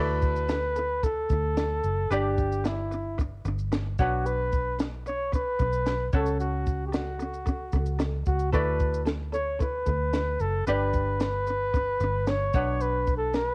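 A flugelhorn carries the melody from the first moment, up front with a light vibrato and a warm pop tone, over fingerpicked ukulele and a round, foam-muted electric bass. A compact cocktail drum kit joins at 0.2 seconds with a punchy kick, a high-tuned snare and a shaker, its sound dark and rolled-off at the top as if in a small room. This is a heartfelt, sunny slice of acoustic pop in D major, moving at 112 BPM in a straight 4/4. The harmony turns through Dadd9, G, Bmadd9 and F#m/C# before circling back to Dadd9, G and Bmadd9, all within a single section cut from a longer piece. The flugelhorn, ukulele and drums carry the gentle grain of cassette tape, while the amped bass sits punchy and close. A moderate spring reverb and the intimate feel of a home recording on cassette give the whole a cosy, homespun character.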